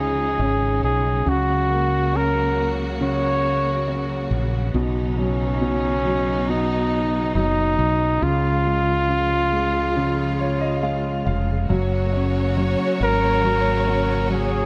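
A slow, straight 4/4 pop pulse at 69 BPM in F# major carries this emotional, hopeful excerpt, where an up-front flugelhorn with light vibrato and a smooth top sings the melody over open concert grand piano, a rich bowed string section holding soft-attack chords, and a round, dark fretless electric bass, before a piano fill at 10.0 seconds leads into a lush violin section entering with a second line at 11.7 seconds, all set in light reverb.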